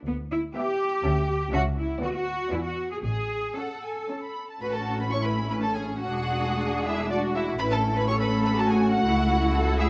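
Muted double basses and cellos open this short cut from a quick, graceful and spirited classical-period movement for string orchestra in A major, their bowed, veiled lines sitting up front at 121 BPM in a rubato 3/4. At 0.6 s the muted violas, second violins and first violins join: the violas give soft-attack accompaniment, the second violins carry a close, dark second line, and the first violins sing the lush, smooth-topped melody with vibrato. Moderate recital hall reverb surrounds the con sordino ensemble as the harmony settles from E7 onto A at 3.0 s and moves into a new section at 4.6 s.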